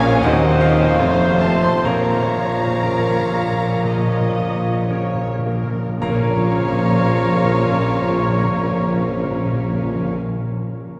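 In a rubato 4/4 that slows through the first 6 seconds, this brooding, tragic romantic movement for piano and orchestra is cut from a longer piece, with a clear baby grand piano carrying the melody alongside a rich violin section, while a bright oboe, pure concert flute, warm clarinet and a second, distant violin section with portamento weave second lines. A bassoon, an expressive viola section, a mellow trombone section, a warm French horn section and clear trumpet stabs fill the harmony, grounded by cello and double bass sections and a roomy tuba. Timpani enter at 1.9 seconds as the music settles onto a B-flat minor chord, with a fill that runs until 6.0 seconds, and everything is bathed in a wet cathedral reverb.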